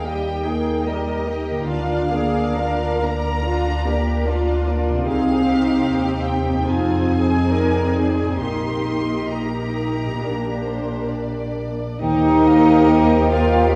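Classical music, a slow romantic movement for symphony orchestra in a serene, lyrical mood, moving with a flexible rubato feel in 4/4. A clear, lush violin section carries the melody with smooth vibrato, while a second violin section sits in the background with a focused second line, and a distant viola section fills in the accompaniment. Rich, bowed cellos and double basses anchor the bass, and a ringing concert harp adds fingerpicked arpeggios behind the strings throughout. At 12.0 seconds, as the harmony settles home, the winds and brass join: a silver concert flute, mellow cor anglais and roomy clarinet add second lines, a very quiet French horn section holds tight sustained chords, and a distant, warm trumpet adds stabs. The whole orchestra is heard from further back in a wet scoring-stage reverb, giving this excerpt, cut from a longer piece, a spacious, glowing sound.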